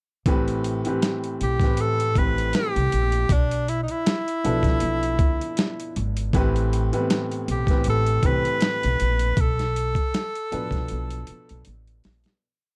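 Introspective and sultry, this short neo-soul R&B piece in A minor moves at 79 BPM with a swung sixteenth-note feel, built on a slow, gritty boom bap groove from a compressed, pitched-down sampler-style kit with a thumpy kick and medium-tuned snare, while a woody pizzicato upright bass plays a laid-back line with chromatic approach notes. A clear, intimate concert grand piano, its action noise audible, lays down spread rhythmic chords with grace notes over Am9 and Bm7b5, and from 1.4 seconds a bright, punchy tenor saxophone sings motif-based song phrases with light vibrato up front. The dark production, touched with light reverb, closes with a fade-out from 9.4 seconds as a drum fill arrives at 10.9 seconds.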